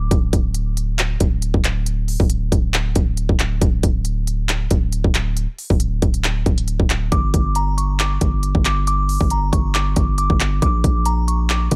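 A half-time trap beat at 137 BPM in 4/4 drives this menacing, hard-hitting hip hop fragment, with an up-front electronic drum kit of hard-clipped kick, crisp hi-hats and handclaps carrying a tape-warm edge, and a heavy, aggressive distorted 808-style bass whose fast-attack, decaying sine tone and noise layer sit between D1 and Bb1. From 7.1 s a glassy, crystalline FM synth bell with a vintage, warbling shimmer of chorus, tremolo, digital delay and low-pass filtering chimes between Bb5 and D6, as the harmony settles on G5 and then Bb at 10.6 s, inside a filtered digital ambience.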